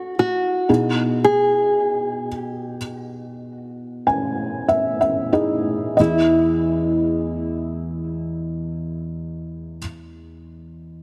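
This emotional, hopeful pop fragment, cut from a longer piece, moves at a slow, straight pace that gradually slows through its first 6 seconds, with the harmony shifting from A to Emaj7 almost at once. A dark, fingerpicked nylon-string guitar carries the melody up front, its small, acoustic tone carrying audible finger squeak and a trail of tape echo before it falls silent at 9.8 seconds. Beneath it, a felt-muted upright piano supplies soft, mellow accompaniment across a broad register, sounding intimate and boxy, with thick felt, short sustain and audible action noise. The piano adds a felt fill from 3.5 seconds, leading into a second section. A moderate plate reverb surrounds the instruments, while heavy multiband compression gives the recording a squeezed, radio-like character.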